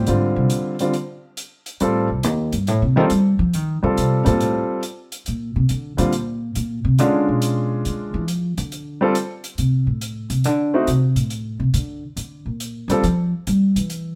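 A woody, pizzicato upright bass takes the solo from the start, sitting up front alongside a warm, natural concert grand piano with deep low end that carries the melody, in a swinging, sophisticated jazz piano trio cut from a longer piece at 139 BPM in F mixolydian. An acoustic hi-hat with a small-room character sits quietly beneath them, and the whole band plays live in one room with moderate large-studio reverb. The harmony moves from Csus24 through F9, Bbadd9 and Bdim7 to a rootless F6 and Gm7, and the piano drops out at 13.0 seconds while the bass carries on to 14.2 seconds.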